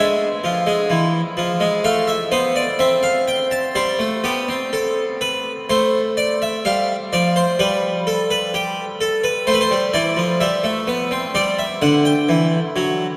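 A brilliant, full-bodied harpsichord, plucked and up front with its three sets of strings, plays a joyful, elegant baroque-style two-part invention in 4/4 across a range from D3 to A5, turning from a minor opening to a major passage at 3.8 s, all bathed in a vast, echoing cathedral reverb in this short cut from a longer piece.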